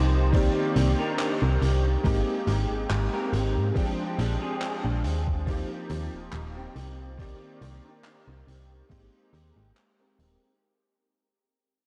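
Soaked in huge ambient reverb and cassette tape haze, this melancholic vaporwave fragment fades out across its length as an up-front, clangy electric grand piano with 12-bit sampler grit, chorus and delay lays down Cm9, Abmaj9, Bb13 and Eb6 chords over a snappy, metallic FM bass with tube saturation, a thumpy sampler-style electronic kick and a gritty garage kit of handclaps and hi-hat, while a twangy, picked clean electric guitar riff sits in the background under chorus, delay and a filter sweep.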